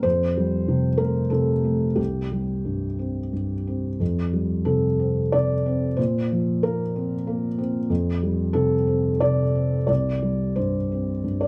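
Neoclassical minimalist piano in F major, hopeful and tender, moving at 91 BPM in 3/4 with uneven, rubato beats and tuned slightly low to A4 = 437 Hz. A felt-muted upright piano plays alone from 0.0 to 11.5 seconds, spanning C2 to D5, its thick-felt tone mellow, intimate and up front with audible action noise and a vintage character. The dark production adds light reverb as the harmony circles through Fadd9, C5 and Bbsus2 in this short excerpt cut from a longer piece.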